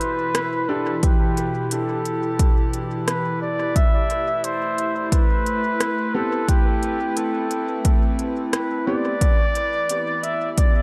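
Swung sixteenths at 88 BPM in 4/4 carry this hazy, deep ambient dub excerpt in A minor: a punchy, overdriven electronic kick arrives at 1.0 s under crisp, overdriven hi-hat and rim click from an organic electronic kit, while a warbling, detuned tape-like pad holds dark chords from Em to Am9 and Em7 through chorus and phaser. A woody upright piano drops dub-echoed stabs in the background at 0.7 s and again from 6.1 s, and a veiled, bucket-muted trumpet with light vibrato sings the melody up front, its dub echo trailing into a roomy echo-chamber reverb.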